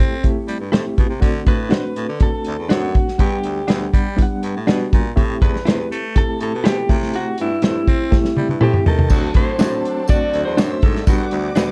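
A warm, danceable slice of uptempo 1960s-style soul at 122 BPM in D mixolydian, cut from a longer piece and moving in a straight 4/4 over chords of C6, D7, Gmaj7 and Am7. A dark, slightly broken-up electric guitar through a small old amp carries the melody with spring reverb, over a barky, reedy electric piano whose light overdrive and fast tremolo fill the accompaniment. A breathy, raspy baritone saxophone plays the bass line, while the acoustic drum kit sits up front with a punchy kick, medium-tuned snare and dark cymbals, adding a fill from 8.1 to 9.1 seconds. A clean, direct-recorded electric guitar with vibrato enters at 0.7 seconds to add picked, compressed stabs in the background. From 9.1 seconds the arrangement fills out: a clear, vintage horn section and a lush, bowed studio string section join on a second line with plate reverb, an overdriven tonewheel organ holds very quiet, gritty chords with key click, and a jingly tambourine sits close and dry behind them. 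The production is dark, with light reverb.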